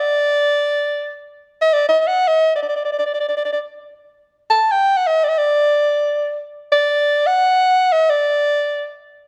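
In free time, this passionate fragment of Persian modal music in dastgah homayun on D features a soprano saxophone alone from 0.0 to 8.9 seconds, its warm, vibrato-laden, jazz-inflected tone sitting up front with a smooth top as it moves between D5 and A5 inside the moderate reverb of a recital hall.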